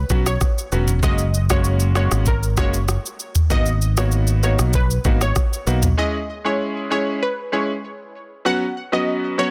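A detuned sawtooth analog pluck carries the melody through chorus and digital delay in this sultry, hypnotic afrobeats excerpt, riding over a brilliant, worn grand piano, a dark, round fingered electric bass and an electronic afro-pop kit with a knocking kick and a softly clipped snare, until bass and drums fall away by 6.0 seconds for a break that leaves piano and pluck in a dense, heavily limited mix with digital ambience.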